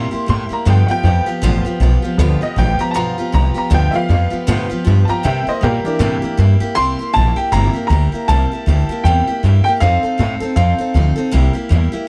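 A swung, rowdy rockabilly shuffle at 158 BPM in C mixolydian, cut from a longer piece, rolls along on a thumpy, woody upright bass up front and a bright, full-bodied picked steel-string acoustic guitar under light reverb. For the opening 6.8 seconds a detuned, jangly honky-tonk upright piano takes a rollicking solo over C7 and G7 changes. At 6.8 seconds a second upright piano, warm and open, carries the melody high in its range as the harmony moves to F7 and back to C7.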